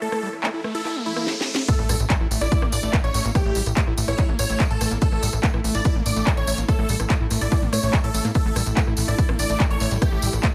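A straight 4/4 groove drives this psychedelic, driving trance passage, which opens on an electronic riser and a cracking, overdriven techno drum fill before the drop at 1.7 s lands with an impact, a heavy, up-front overdriven kick, a jingly acoustic tambourine and a punchy, funky analog bass with a filter pluck. A huge, thick supersaw melody treated with phaser, sidechain pumping and dub echo is joined by a squelchy, screaming acid riff with distortion, chorus and delay sitting in the background, while a blurred granular cloud pad and a mellow, pulsing gated chord texture fill out the digital ambience. A very quiet formant-sweep wobble bass flickers in at 9.7 s.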